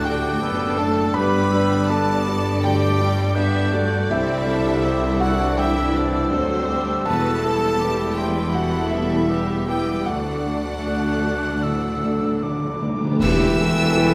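Cinematic orchestral film score, bittersweet and longing, flowing rubato at 75-83 BPM, where a rich, distant studio violin section carries the melody over airy flute, mellow cor anglais, solo clarinet and an intense, close second violin section, with a felt-muted upright piano revealing soft action noise beneath focused violas, dark distant horns and clear cellos and double basses, while hard-mallet timpani strike briefly at 1.2 seconds and return with a timpani fill at 10.1 seconds alongside bright clash cymbals, a cymbal swell and concert bass drum leading to a band accent at 13.2 seconds, all set in a wet scoring-stage reverb.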